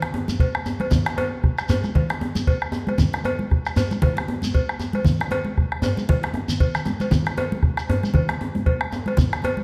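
West African traditional drum ensemble at 116 BPM in 4/4, with a swung sixteenth-note feel and a powerful, earthy mood, cut from a longer piece and set in a reverberant recital hall. A round, close and dry bombo sits up front beside a deep djembe with metal rattles and hard hands, while bright, damped congas with a thin skin, a grainy, compressed shekere and a metallic cowbell join within the first half second. A drum fill breaks in at 6.5 seconds before the ensemble carries on to 9.6 seconds.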